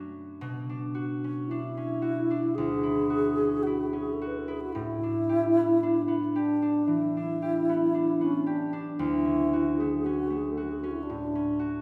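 Classical impressionist duo for alto flute and concert harp in B minor, its mysterious, hazy mood unfolding at a slow, rubato 51-59 BPM in 4/4. The harp opens alone, its bright, ringing, fingerpicked accompaniment sitting up front and moving through Bm11, Dmaj9 and A9sus4 before settling on Dmaj7 at 9.0 seconds. At 1.5 seconds the wooden-headed alto flute enters with the melody, an airy, expressive line coloured by vibrato and a crisp attack. Both instruments are placed close to the listener, while a wet recital hall reverb with a 1.7-second decay lends the sound of a church or concert hall. Tuned slightly high to A4 = 443 Hz, this brief passage is cut from a longer piece.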